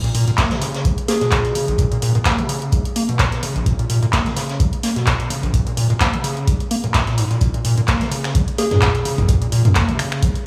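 A squelchy, distorted acid bass riff sits up front in this gritty, trippy acid house fragment, its resonant square-wave tone, filter sweep and tube saturation pumping against an overdriven deep kick that was re-recorded in a large room. A punchy analog drum machine adds snaps, handclaps, hi-hat and toms with a light swing, while a distant brushed jazz kit with a high-tuned snare and rolled-off top murmurs in the background. A round, warbling FM synth lead with 12-bit grit and tape echo touches a single note at 1.1 and 8.6 seconds, all over a Bbm chord in a dreamy, plate-reverb-soaked mix.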